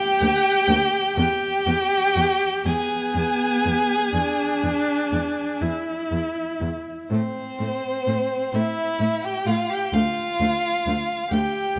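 Elegiac and melancholic, this fragment of a slow romantic movement for string quartet unfolds in a rubato 12/8 lilt. A rich, focused first violin carries the melody from a distant vantage, while a close, up-front second violin sings an expressive line beneath it with soft attacks, portamento and vibrato. From 0.2 s the viola adds smooth, even accompaniment and the cello supplies a warm, expressive bass with its own portamento, all set in a moderate recital hall reverb.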